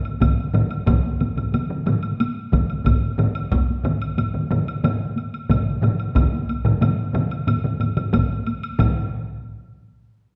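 From 0.1 seconds, a taiko ensemble played with heavy sticks in a small room and a close, woody woodblock open this powerful, driving Japanese traditional drum passage in straight 4/4, soon joined by a distant, up-front hard-stick taiko group in a large room, a close and dry heavy-stick taiko set in the background, and another hard-stick taiko in a small room, all wrapped in a dark production and recital-hall reverb until the drums stop at 9.4 seconds in this cut from a longer piece.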